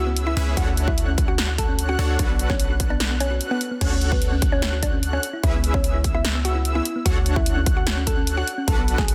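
Riding a half-time feel at 148 BPM in 4/4, this playful, bright future bass passage, cut from a longer piece in D lydian, sits in a drop from the first second, with chords moving through C#m7, Dmaj7 and Bm7. A woody, mallet-like FM synth pluck carries the melody, its round tone colored by chorus, phaser and delay and pumped by sidechain, while a detuned supersaw stab plays a sawtooth riff with a filter pluck and tape echo. In the background, an airy, dreamy lead with vibrato spins high arpeggios, and a tine-like thumb-piano pluck adds gentle lower arpeggios from 0.1 seconds, both softened by chorus. Underneath, a boomy, dark 808-style bass with a sine core anchors the low end, and a big-room dance kit with a punchy snare, hi-hat, ride and crash comes in at 0.2 seconds, joined by a layered electronic kick at 0.6 seconds. Light reverb and a dense, heavily limited modern master keep the mix tight and loud.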